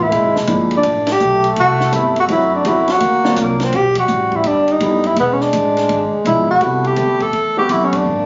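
A relaxed, swinging small-group jazz passage in 4/4 at 166 BPM, its eighth notes swung at 65%, cut from a longer piece and settling into G major at 3.7 s. A breathy tenor saxophone carries the melody up front with an intimate, whispered tone, soft attacks, scooped notes, vibrato and a smooth top, while a mellow trombone sits lower as a second line, also scooping into notes with vibrato. A woody, thumpy pizzicato upright bass anchors the bottom, and a compact cocktail drum kit sits far back in the mix, dry and natural, with dark cymbals, a high-tuned snare and a punchy kick across hi-hat, ride, snare and kick. A warm grand piano enters at 0.5 s with comping that carries long sustain and audible action noise, moving through extended harmonies such as A#7#11, D7alt, G69 and E7b9. The whole band hits three accents together, and the sound is that of a phone recording in a small club, with a moderate short room reverb and a dull top end that rolls off at 7.5 kHz.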